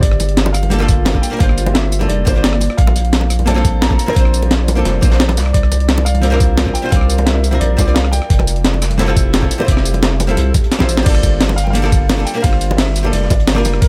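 Opening straight into a drop, this soulful, melancholic liquid drum and bass excerpt sets a gritty, thumpy electronic kick and a deep, saturated sub bass up front beneath a compressed sampler-style breakbeat kit and a dark, crunchy second breakbeat kit tucked in the background, with ringing congas joining at 0.2 s, a clean hollow-body archtop guitar with tape echo accompanying, a mellow vintage baby grand piano carrying the melody through delay, and a very quiet, glassy FM pad holding chords until 11.0 s, fading out during a drum fill that runs from 10.7 s to 11.1 s.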